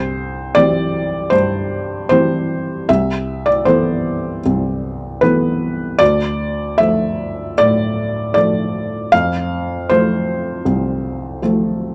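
A felt-muted upright piano plays alone throughout this peaceful, tender fragment of neoclassical minimalist music, its soft, intimate, short-sustained tone sitting up front with audible action noise as it moves in a loose rubato through C, Amadd9/C, Dm and F, captured in a dry, close 1970s-style studio sound.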